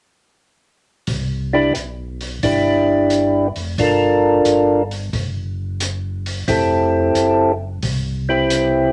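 A mellow tonewheel organ bass line, round and clean with chorus vibrato and a slow rotary speaker, starts at 1.1 s alongside an open acoustic jazz kit of hi-hat and a boomy kick, dark with its top rolled off in a studio room. At 1.5 s a percussive tonewheel organ melody arrives up front, its third-harmonic percussion and slow rotary lending a greasy bite as it moves over Cmaj7, Gm7, a brief break in the chords and Fmaj9. This short cut from a longer soul jazz organ trio piece swings at 89 BPM in C major, set in a moderate studio reverb.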